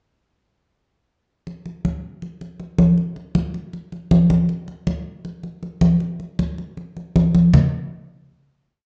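This short, complete Latin piece opens at 1.5 seconds with a pair of congas, one high and one low, playing alone in a sunny, relaxed mood. The tempo is a brisk 158 BPM in a straight 4/4 feel. The drums have a thick-skinned, medium-tuned acoustic tone, struck with hard hands and mixing crisp slaps with ringing open strokes. They sit up front in a live-sounding room, with a moderate studio reverb adding a short, natural tail. The verse-like groove runs until 7.5 seconds, when a final hit closes the piece by 8.8 seconds.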